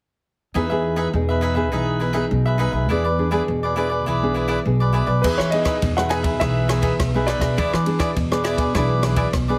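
A lively, sunny piece of samba and choro in E major, moving at 102 BPM in a straight 4/4, cut from a longer performance. A bright, crisp cavaquinho sits up front from 0.5 seconds, picked over a dark, fingerpicked nylon-string guitar with old strings and a classical touch, while a woody pizzicato upright bass with steel strings anchors the low end. The harmony moves between Emaj7 and E7. At 5.2 seconds a second section opens as a concert grand piano takes the melody, intimate and natural with audible action noise and deep bass, and a compact cocktail drum kit enters with dark cymbals, a tight kick, ride, crash and rim clicks, dry and acoustic. The whole has light reverb and a heavily compressed radio sound.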